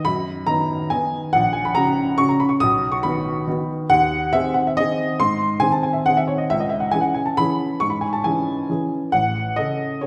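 A dark upright piano carries this short classical waltz alone, its mellow, woody tone slightly detuned and placed up front, with the clatter of its action audible throughout. The mood is wistful and nostalgic, moving in 3/4 at 139 BPM, though the beats are uneven and the rubato lets the pulse breathe and bend. The piano spans a range from A1 to D#6, and the harmony opens on B and F#/A# before settling into C# minor from 3.9 seconds by way of G#7/D#, with F#m/A arriving near 9.1 seconds. A reverberant recital hall, the kind found in a church or concert hall, wraps the intimate instrument in a lingering 1.7-second tail. Lasting about 10.1 seconds, the excerpt is cut from a longer work.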